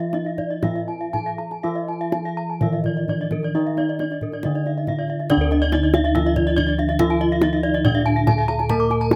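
A straight 4/4 pulse moving between 120 and 142 BPM drives this ceremonial, shimmering fragment of Balinese gamelan. A mellow, padded-mallet bronze metallophone carries the melody over a lower metallophone accompaniment, while two horn-mallet metallophones ring out arpeggios, one of them airy, with paired tuning giving off beating shimmer. Round bossed gongs anchor the bass, a tight, close and dry kendang played with soft hands adds percussion, and light reverb frames the piece as it passes into a new section at 5.3 seconds.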